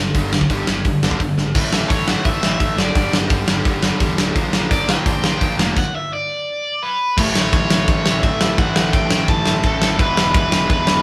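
Recorded as a band playing live in one room with light reverb, this rowdy, rebellious punk rock excerpt at 170 BPM layers a compressed, distorted guitar riff in the background and a second, bright overdriven guitar riff over a growly fuzz bass, all driven by a big, punchy acoustic drum kit placed up front, with a drum fill at 1.4 s ahead of a prominent overdriven lead guitar melody entering at 1.9 s before a stop from 5.8 to 7.2 s.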